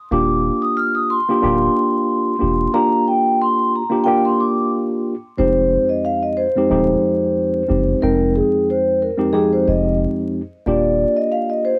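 A crackly cassette-and-vinyl haze with light reverb frames this short boom-bap hip-hop excerpt in F dorian at 91 BPM with a gentle 16th-note swing, where a ringing, metallic soft-mallet vibraphone carries a reflective yet tough melody up front over a worn, slightly out-of-tune tine electric piano moving from Ebmaj7 to Fm9 at 5.4 seconds and back, both filtered and tape-coloured, while a deep, round dub sub bass sits quietly beneath until 11.0 seconds.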